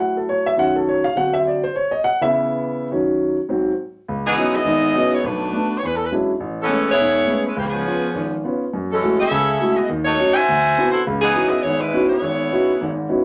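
Jazz with a brassy, swinging mood, cut from a longer piece and heard through a wet club reverb. A concert grand piano with deep bass and audible action noise plays alone until 4.1 seconds, then accompanies a tight, close-miked saxophone section that carries the melody from 4.3 seconds with light vibrato and soft attacks. The piano sounds intimate and vintage, and the clear saxophones sit up front over rich, shifting jazz chords.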